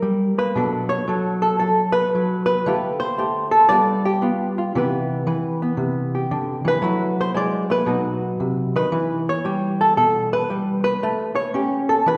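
Moody and smoky, this solo jazz excerpt of about 12 seconds features a dark, clean, fingered hollow-body electric guitar, compressed and up front, swinging loosely with rubato through rich extended chords like Bm9, Cmaj9 and F#m11 before reaching A7, all bathed in the long, wet bloom of a recital hall.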